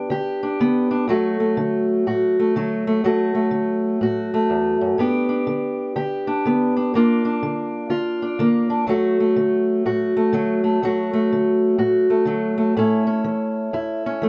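Rollicking and gritty, this short blues excerpt features a lone fingerpicked steel-string acoustic guitar with a boxy, parlour character, sitting up front in a dark production with light reverb as it swings through changes from G to D, a shaded turn to Gm7, and on toward A.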